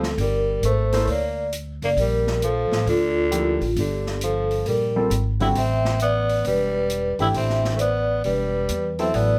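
Hypnotic and cool, this modal jazz clip in G dorian swings at 134 BPM, with a mellow, ringing vibraphone played with soft mallets and a medium motor vibrato carrying the melody over Gm9 before shifting to Am11 at 5.6 seconds. Beneath it, a breathy, gritty tenor saxophone growls out a second line with scooped notes, while a woody pizzicato upright bass sits up front and an open drum kit keeps hi-hat and snare time with a natural studio-room sound. A concert grand piano joins at 0.9 seconds with intimate accompaniment, its deep bass and audible action noise adding warmth, and light reverb lends the short passage some air.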